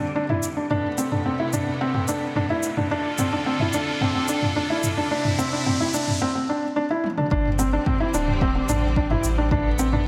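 Piano and strings electronica at 109 BPM in 4/4, this short excerpt feels hopeful and luminous, moving through chords from Gsus4 and Amadd9 to Dm and Cadd9. A soft, felt-muted upright piano sits up front playing a mellow riff in a narrow range, its short sustain, audible action noise and digital delay giving it an intimate quality. Behind it, a bright, biting symphonic string section holds sustained chords from a distant position, with light vibrato and sidechain pumping, while a round sine sub bass with a fast attack, also pumping and high-pass filtered, anchors the low end. Overdriven electronic toms and shaker enter at 0.3 seconds and an electronic riser climbs through the build-up from 1.2 to 6.2 seconds, followed by a brief break and a drum fill at 7.0 seconds. The drop arrives at 7.3 seconds with a deep, layered, tape-toned electronic kick drum, all set in a moderate scoring stage reverb.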